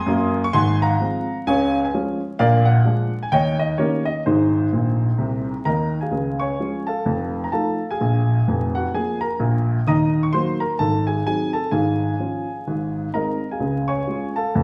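Stride jazz for solo baby grand piano, this exuberant, swinging passage is cut from a longer piece and rides a swung eighth-note feel in 4/4. The piano is warm and worn in tone, with long sustain, sitting up front and ranging from a deep F1 up to a high Eb6. A brief fill from 4.7 to 6.1 seconds closes the opening phrase, and a new section begins at 6.1 seconds, moving through dominant chords such as F7, Bb7 and Ab7b9 before settling back on Db. A large studio reverb gives the piano a roomy, live-in-the-room sound, while a layer of vinyl crackle lends it the character of an old record.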